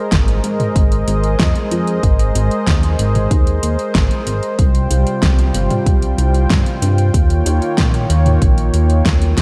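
A glossy, chorused synth bass built from pulse, sawtooth and triangle tones, with ring modulation and a plucked filter, anchors the low end of this nostalgic, nocturnal synthwave passage at 94 BPM in straight 4/4, tuned to A4 = 441 Hz. A punchy, tape-warm electronic kick sits alongside a layered pop drum kit with a fat snare, metallic hats and toms under gated reverb, while a detuned sawtooth pad with a slow attack holds smooth sustained chords, breathing with chorus and sidechain pumping. Inside a digital ambience, the harmony moves from Abadd9 to Csus4 at 4.6 seconds and Eb7 at 7.1 seconds, in a short section cut from a longer piece.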